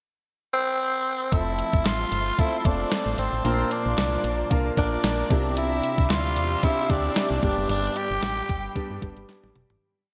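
1980s-style pop at 113 BPM with a light 16th-note swing, glossy and nostalgic, it opens with a raspy, growling tenor saxophone at 0.5 s, treated with delay and slapback echo, leading into a pre-chorus over an F, Bb, Cadd9, G progression. A polished baby grand piano pushes close-voiced chords with grace notes, a punchy, round FM bass plays a syncopated pop-funk line with chromatic approach notes, and a sampler-style drum machine with a thumpy kick and fat snare drives a big backbeat, while barely audible hollow handclaps sit on the backbeat and a shimmering, ethereal pad floats in the background. A very quiet, lush violin section in octaves joins at 4.8 s, the whole piece set in a lush hall reverb for a big arena sound before a fade-out from 7.7 s.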